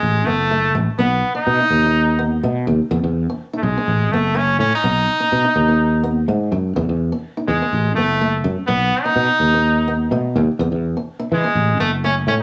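A clear, forceful jazz-style trumpet with light vibrato and scooped notes leads this joyful, carefree highlife guitar band excerpt in E major at 125 BPM, with a light swing on the sixteenths, over a boxy fingerpicked steel-string acoustic guitar with audible finger squeak and a cassette-tape tone, and a growly, punchy fretless electric bass sitting up front, all three playing from the start through about 12 seconds over B, E5 and A chords, with moderate spring reverb and the small-room ambience of a home cassette recording.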